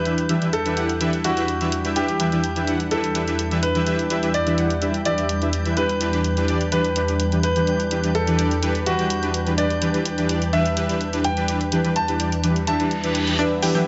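Driving yet bittersweet, this progressive house excerpt opens on a bright, brilliant grand piano melody with tape echo, set over an airy, breathy pad holding sustained chords and a soft, full-bodied supersaw playing stabs up front, while a reversed, dreamy texture sits in the background and a high-passed electronic hi-hat and cabasa keep time. The harmony moves from Em7 to G/E at 5.8 seconds, and a filter sweep runs through the synth pad until 13.4 seconds, with a reverse cymbal sounding from 12.8 seconds. At 13.4 seconds a round, detuned analog pluck arpeggio enters, joined by a barely audible fat analog bass and a very quiet, dry conga hit, all within a light reverb.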